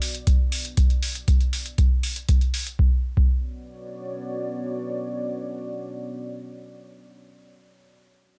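Gritty and driving, this acid house excerpt opens with metallic analog hi-hats and a deep, moody ambient pad, joined at 0.3 seconds by an up-front analog kick drum with a tape-warm, small-room character. The hats stop at 2.8 seconds as the music moves into a new section, while the detuned sawtooth pad, with its sub octave, chorus, built-in reverb and sidechain pumping, sustains until 7.4 seconds under a light reverb.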